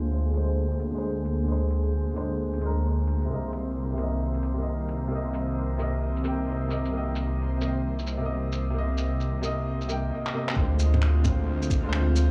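Ghostly and nocturnal, this short future garage excerpt drifts with a swung sixteenth-note feel, cut from a longer piece. A woody upright piano with long sustain carries the accompaniment through dub echo and sidechain pumping, while an airy, breathy pad sits soft and mellow in the background, its chorus and moving notch giving the sustained chords a faint shimmer. Up front, a menacing detuned saw bass growls low with a saturated, evolving filter swell, and a reversed, granular texture glimmers very quietly in a high register until 10.1 seconds. Muffled, pitched-down shakers, handclaps, cabasa, bongos and finger snaps enter at 0.3 seconds with a sampler-style, compressed character, a filter sweep runs under the opening, and a drum fill at 10.2 seconds leads into a new section at 10.6 seconds, where a thumpy, muffled kick drum appears briefly and the harmony shifts to Dm7b5. The whole mix feels echo-heavy, set in a small room with digital ambience.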